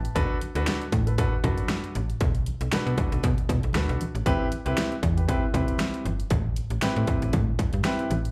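Slick and funky, this short cut of early-eighties boogie funk in A dorian moves at 117 BPM with a 16th-note swing, as a snappy, metallic FM slap bass and a layered, distorted dubstep drum kit with a huge snare and bright hats sit up front over a shift from Bm7 to Am7 at 4.3 seconds. A warm concert grand piano with deep lows opens with a fill and carries on as accompaniment through a slapback echo, while damped, low-tuned congas enter at 0.2 seconds, very quiet in the background. The whole thing sounds like a live gig heard through the venue's PA, wrapped in light club reverb.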